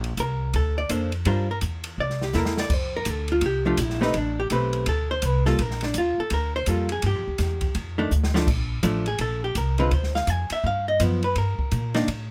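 A brisk swing at 166 BPM in 4/4 carries this short cut from a longer small-group jazz piece, its eighth notes lightly swung and its mood cool and moody. An open acoustic drum kit sets the pulse with ride cymbal, hi-hat, snare, kick and crash, sounding airy and polished in a small room, with dark cymbals, a medium-tuned snare and a boomy kick, plus brief fills at 2.3 and 8.1 seconds. The pizzicato upright bass sits up front, woody and thumpy on steel strings, holding down the low register from A1 to Bb2. A vintage hollow-body electric guitar, clean, picked and compressed with a dark tone, supplies the chords close to the listener, moving through rich voicings such as Bbmaj9, Gm7, F69 and Am9 while the tonal centre shifts from G minor to Bb major at 8.5 seconds. Close, detailed miking and light reverb keep the trio intimate and clear.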